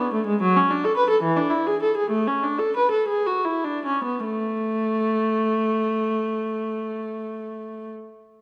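A solo viola plays from the start in a flowing, serene baroque-style suite movement in A major and 6/8. Its rubato pulse sits around 50-75 BPM in dotted quarters and slows over the first 4.2 seconds before a new section begins. The single bowed, period-style player is up front, with a reedy gut-string tone and light vibrato, set in a dark, warm production with a wet concert hall reverb of 1.9 seconds, in this short passage cut from a longer piece, with the viola sounding until 7.9 seconds.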